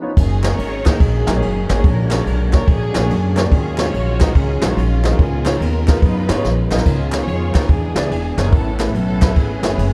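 A baby grand piano and a tonewheel organ open this jubilant, reverent slice of uptempo gospel, the piano intimate with audible action noise and a short sustain, the organ sitting in the background with full, lightly overdriven chords colored by fast rotary speaker and chorus vibrato. Almost at once a lush bowed string section takes the melody, expressive and smooth on top, with vibrato and portamento. A pizzicato upright bass, woody and up front, and a brushed drum kit with dark cymbals, a medium-tuned snare and a boomy kick settle into a swung 4/4 groove, and a very quiet, hollow group handclap sits close and dry beneath them. The drums play a short fill at 6.4 seconds, and the harmony moves through rich altered and extended chords toward a major ninth at 8.5 seconds. The production is dark and warm with light reverb, and the piece is cut from a longer performance.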